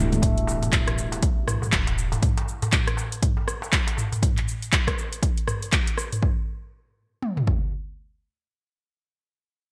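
A smooth, detuned analog pad holding E minor chords in the background and a round, woody FM bass open this driving afro house cut at 120 BPM, both pumping with sidechain until 2.2 seconds, while an overdriven afro-pop kit of metallic hi-hat, cabasa, handclaps, rim clicks and toms with gated reverb, a soft-handed clay darbuka in a live room, and a punchy, up-front deep house kick with toms drive a swung 16th-note groove through a drop that ends at 6.2 seconds, after which the deep house kit carries on alone to 7.6 seconds in a dry, bright 1980s-style digital mix.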